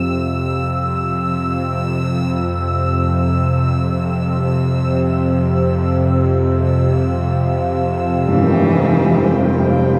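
Drenched in cathedral reverb, this dark ambient drone hangs in a vast, echoing space, a desolate and unsettling fragment cut from a longer piece that drifts in free time. Up front, a tense, string-like bowed drone sits low and holds steady with a gentle vibrato. Above it, a deep, moody pad sustains an Fsus2 chord, its detuned sawtooth layers thickened by chorus and a sub octave, with a moving notch shading its dark colour. Higher still, a bubbling texture with random filter steps adds a resonant, bright shimmer throughout. At 8.3 seconds a single tam-tam stroke rings out with bright cymbal tone, and a lone cello enters on an expressive, nasal, boxy phrase with vibrato, portamento and delay, carrying on to 9.9 seconds.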